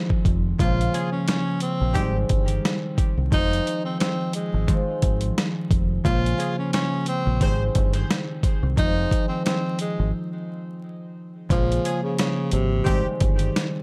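Vinyl crackle, small room reverb and an echo-heavy mix frame this moody, gritty boom-bap hip-hop clip, cut from a longer piece and played with a swung 16th-note feel. A compressed, sampler-style drum kit with a thumpy kick and medium-tuned snare sits up front beside a ringing, fingerpicked concert harp and a round, punchy dub bass, while a breathy tenor saxophone carries an intimate, whispered jazz solo with subtone and vibrato. A tight horn section adds short stabs from 0.9 s, with tape echo on the harp, saxophone and horns, and a break at 10.1 s leads into the closing section.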